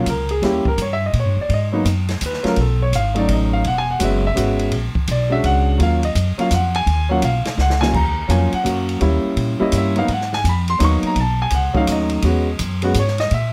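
Dry, closely miked and detailed, this cool, moody jazz piano trio piece in 3/4 swings at 168 BPM in Eb minor, with an up-front grand piano soloing throughout over a woody, thumpy pizzicato upright bass and an acoustic drum kit with dark cymbals and a boomy kick that plays a fill at 7.6 s, as the chords cycle through Eb7b9, Abm9, B7 and E69 across a repeated section cut from a longer performance.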